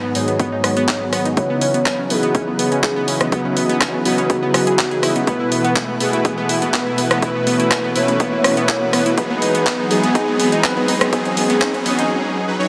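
Driving and expansive, this progressive house build-up moves through lush minor-key chords while a velvety, vibrato-tinged synth lead carries the melody over detuned analog pluck arpeggios, a thick, warbling pad held in the background, and smooth supersaw stabs, with filter sweeps opening up the supersaw and lead throughout. A tape-warm house kit of handclaps, hi-hat and rim click sits up front, with an overdriven, punchy electronic kick behind it, while the pad, pluck, supersaw stabs and hats pump against the beat and a very quiet riser creeps in at 3.8 seconds. A huge ambient reverb gives the mix a vast sense of space, and everything drops into a brief break at 12.1 seconds as only the supersaw rings on.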